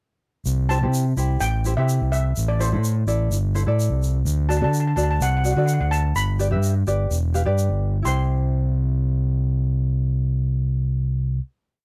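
Sunny and festive, this short calypso piece moves at 127 BPM in a straight 4/4, set in C major. A shimmering steel pan, struck with hard rubber sticks, carries a free, airy melody that never settles on a recurring motif, while a thumb-plucked tenor ukulele supplies light rhythmic triad chords underneath. Up front sits an overdriven fingered electric bass, round and amped, playing a syncopated figure through a verse that moves from C to Am, D7 and G. A grainy egg shaker adds a bright shaker pattern at a low level until 8.3 seconds, just after the band arrives on a final C chord at 8.1 seconds and lets it ring to the close. The sound is dry and close, in the manner of a 1970s studio recording.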